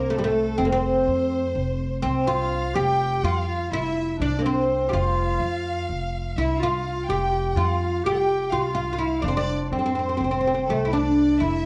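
Soulful and melancholic, this short cut from a longer Turkish makam ensemble piece moves in a straight 9/8 at 250 BPM (counted in eighths), set in F makam rast. A deep, woody fretless oud, plectrum-plucked on its double strings, carries the melody up front, while a clear, focused chamber violin section with vibrato and a classical-style clarinet in the background each play a second line, over a pizzicato upright bass with steel strings. The whole sounds like worn old cassette tape with warbly pitch drift, set in a moderate recital hall reverb.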